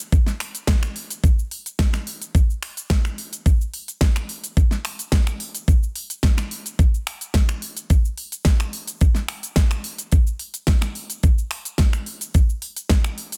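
Nu-disco with a groovy, cosmic mood, this brief cut features a knocking, up-front electronic kick drum alongside a layered pop drum kit of fat snare, crisp hi-hat, cabasa and finger snaps, all set in a digital ambience with a dense, heavily limited modern master.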